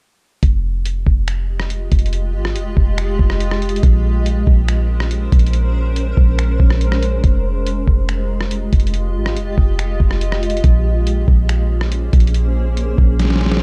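A half-time groove at 141 BPM in 4/4 begins at 0.4 s, carried by a lo-fi sampler-style drum kit of finger snaps, hi-hat, rim click, a thumpy kick and a medium-tuned snare, all compressed, pitched down and muffled, sitting up front. A soft 808-style bass enters with the drums, its round, sine-like tone deep and dark, with a fast attack and a decaying tail, also placed up front. At 1.7 s a granular cloud pad fades in with a slow attack, holding blurred, evolving unison chords colored by its own built-in reverb and sidechain pumping. The harmony alternates between Fm9 and Bbm9 in F minor, giving this atmospheric cloud-rap fragment an ethereal, hazy mood. The overall production is dry, dusky and mellow, and a short drum fill at 13.2 s closes the passage, which is cut from a longer piece.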